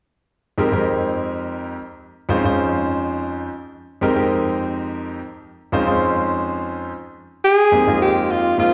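Nocturnal and slick, this short jazz excerpt in a straight 6/8 feel opens with a clear grand piano laying down accompaniment, alternating between Fm11 and Dbmaj9/F chords. The piano sits up front with a natural tone and a touch of plate reverb, holding the floor alone for the first stretch. At 7.4 seconds a breathy alto saxophone enters with the melody, close-miked and up front, its vibrato and scooped notes giving it a sultry jazz solo character. The horn is layered with plate reverb, slapback echo and tape echo, which thicken its short phrase before the clip cuts off at 8.7 seconds. The whole performance carries the feel of a live gig heard through a venue's PA, set in a moderate club ambience with a hint of recital hall reverb.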